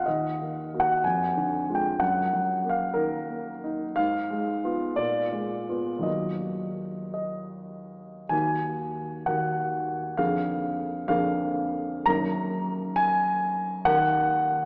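Bittersweet and stormy, this brief excerpt from a longer romantic character piece for solo piano sits in Eb minor and moves with a free, rubato feel in 2/4, drifting between about 49 and 68 BPM. A warm grand piano, placed up front, carries everything alone from 0.0 to 14.7 seconds, ranging from Eb2 up to Bb5. The harmony circles the home key through diminished chords and a tense Bb7b9 before settling, and after the opening idea a contrasting passage begins at 8.3 seconds and closes back on Eb minor at 13.9 seconds. A wet church reverb with a long 3.4-second tail surrounds the instrument, giving the sense of a church or concert hall. Even so, the overall sound is small, as if heard through a modest speaker, which lends the brooding music a distant, intimate quality.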